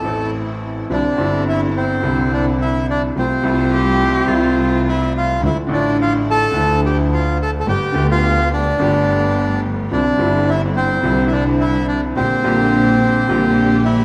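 A reedy, up-front bandoneon sings the melody over a brilliant baby grand piano with long sustain and a biting, close bowed double bass with vibrato, while a dark string section plays soft sul tasto stabs in the background, a warm cello adds a brief portamento line from 3.7 to 4.7 seconds, and a large studio reverb surrounds this melancholic, tense tango in C major, taken from a longer piece at a rubato 107 BPM, tuned to A4 = 435 Hz, moving through Cadd9, Fadd9/C, Dmadd9 and Gadd9 before closing on Gm/Bb.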